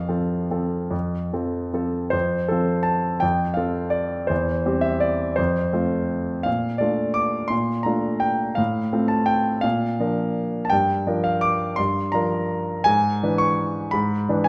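Elegant and wistful, this short excerpt from a classical piano waltz in F major moves in a rubato 3/4 between 142 and 179 BPM, with a clear, polished concert grand playing solo and up front from E2 to D6, its deep bass and short sustain set in a wet recital hall reverb as the harmony passes through Bbmaj7 and Gm7 before closing on E7/G# at 12.9 seconds.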